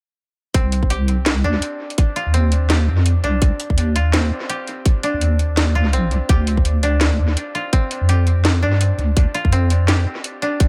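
Half-time drum and bass at 167 BPM in C minor, with a cinematic, tense mood and a swung 16th-note feel, cut from a longer piece that moves from Cm to Dm at 6.3 seconds. A deep, dark wobble bass with chorus and tube saturation sits up front alongside a tight electronic kick, while a layered kit adds a cracking snare and metallic hats through tape echo. A woody, fingerpicked koto plays arpeggios under dub echo from 0.5 seconds to the cut at 10.7 seconds, all in an echo-heavy mix with little reverb.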